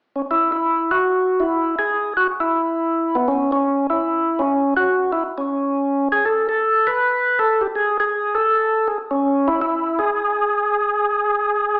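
Jazz with a smoky, bluesy mood and a swung feel, this short excerpt features a lone percussive tonewheel organ playing solo from 0.2 to 11.8 seconds in a middle register. The organ sounds full and clean, with second harmonic percussion, audible key click and a slow rotary speaker, sitting up front. The whole is bathed in a wet, large studio reverb and heard from further back in the room with an AM radio character.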